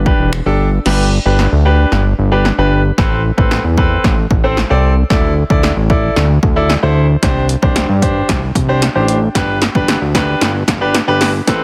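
A dense, heavily limited modern mix with light digital reverb opens this driving dance-pop excerpt at 113 BPM in a straight 4/4, its mood confident and forward-leaning. A fat sawtooth bass, thick and detuned with a fast attack and sustained notes, sits up front from the first moment and pumps through sidechain compression. A clear, polished baby grand piano enters at 0.1 seconds to carry the chords in its middle register, pumping in the same way. The punchy analog drum machine, tape-tinged and re-recorded in a small room, brings kick, snare, hi-hat, finger snaps and crash cymbal, with soft clipping giving the snare extra bite. From 0.9 seconds the whole passage becomes a build-up, with a drum fill and a filter sweep running through to the end as the harmony moves from G through Amadd9, Dsus2 and Csus2 before landing back on G.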